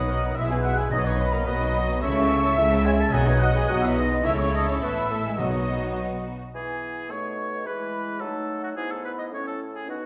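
A quick, cheerful classical-period orchestral movement in E major at 108 BPM in 2/4, where muted, veiled violins carry the melody in the background over con sordino viola, cello and an up-front double bass section, while a pure flute section, a warm vintage oboe, a distant clarinet and a mellow bassoon play second lines and accompaniment alongside tight sustained French horn chords, very quiet hard-mallet timpani tap from 0.9 s, and the strings drop out near 6.4 s, leaving the winds and horns to finish through a recital-hall reverb.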